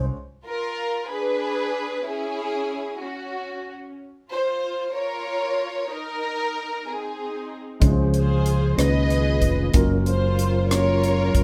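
A brief stab from upright piano, tonewheel organ and fingered electric bass opens this slow gospel excerpt in Db major, moving at 62 beats per minute in a straight 6/8. The studio string section then carries the melody from 0.5 seconds, its bowed ensemble tone lush, woody and close with vibrato, sitting up front over shifting, colorful harmonies. At 7.8 seconds the full band returns: the woody, vintage-toned piano plays accompaniment, the soft, flute-like organ holds sustained chords through a fast rotary speaker with chorus vibrato and a touch of key click, and the round, amped bass anchors the low end. A tight funk drum kit enters at the same moment with hi-hat, kick drum and rim click, its dry, airy, polished sound placed up front. The mood is jubilant yet reverent, and moderate studio reverb gives the feel of a band playing live together in one room.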